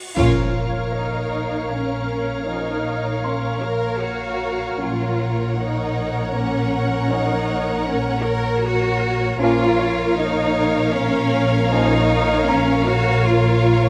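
A cello section, focused and up front, anchors the low end of this eerie, ominous suspense-score cut from a longer piece, joined by a dark double bass section and veiled strings, French horns and a soft organ-like pad with ensemble chorus, all over a very quiet, clear baby grand, while a huge cymbal swell and impact open the moment and a band accent hits at 0.2 seconds.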